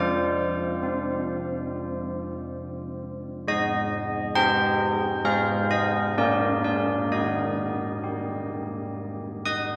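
Old church bells ring alone and up front through this short fragment of a longer classical tune for church bells, spanning F3 to Eb6 over roughly 9.8 seconds. Their bronze, clangorous tone carries a dark minor-third overtone and audible beating, and the strike of a worn iron clapper can be heard in each note. The mood is wintry and solemn, moving at a slow, straight 62-68 BPM in 4/4, with the tuning set to A4 = 438 Hz. The harmony opens on F5, settles into Eb major at 3.5 s on an Ab chord, and passes through Bb7 before landing on Eb at 7.1 s. A long cathedral reverb of about 6.5 seconds surrounds the bells, letting each stroke hang in the vast, resonant space.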